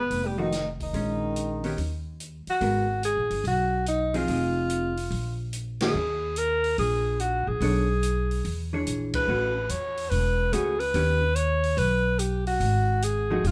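A lightly reverberant sound, with the band playing live in one room, frames this cool, late-night small-group swing and bop fragment in G# minor at 144 BPM. A breathy, subtoned alto saxophone carries the scooped, vintage-styled melody up front over a woody pizzicato upright bass. A dark, clean hollow-body electric guitar accompanies them, and an acoustic drum kit with dark cymbals and a boomy kick sits low in the mix. A soft-attacked tenor saxophone with light vibrato adds a second line only until 2.2 seconds, and the band hits accents at 5.7 and 9.1 seconds.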